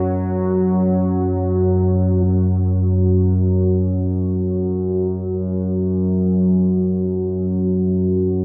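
Vast and ominous, this ambient fragment is cut from a longer piece and rests on a single analog drone playing alone for its full 8.4 seconds. The drone sits up front in the low register, spanning F#2 to F#3, and blends sawtooth and pulse waves with pulse-width modulation, its warm tone warbling and evolving. It has a slow attack, long sustain and long release, and chorus thickens its vintage sound. A huge, wet ambient reverb with an 8.2-second decay surrounds it, and the recording was captured on cassette tape. The music moves into a new section at 2.2 seconds, and the drone carries on there until the fragment ends.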